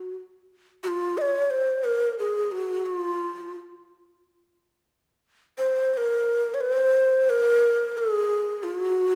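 In a straight 4/4 at 88 BPM, this short Arabic passage, cut from a longer piece, carries a hypnotic, longing mood. A breathy low ney plays alone throughout its 9.2 seconds, sitting up front with a reedy, end-blown tone, a crisp chiff at the start of notes, vibrato and a slightly unsteady delivery. A moderate recital-hall reverb gives the solo line a natural sense of space.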